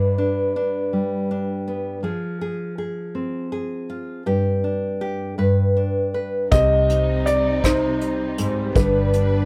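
Melancholic and intimate, this slow acoustic folk-pop ballad in 6/8 at 54 BPM, cut from a longer piece in C harmonic minor, opens with a mellow, smooth-topped French horn over a fingerpicked classical nylon-string guitar with audible finger squeak, then at 6.5 seconds a soft, dark felt-muted upright piano takes the melody up front while a distant, bowed string section with vibrato and portamento holds chords, a round, foam-muted vintage electric bass anchors the low end, and a small-room brush kit with a punchy kick, hi-hat and rim click joins in a dry, close mix.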